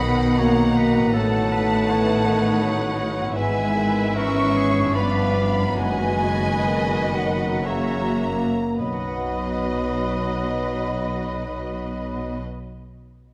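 Classical orchestral music, tender and lyrical, in a rubato triple metre that slows between 2.3 and 8.8 seconds, taken from a longer piece. Lush, expressive violins carry the melody, while a clear oboe, an airy, hollow flute and a second violin line add supporting voices over a bassoon and violas. Mellow French horns and very quiet trombones hold sustained chords, a ringing harp plays arpeggios, cellos and double basses take the bass, and soft-mallet timpani with a round tone enter at 5.8 seconds, all set in a wet scoring-stage reverb.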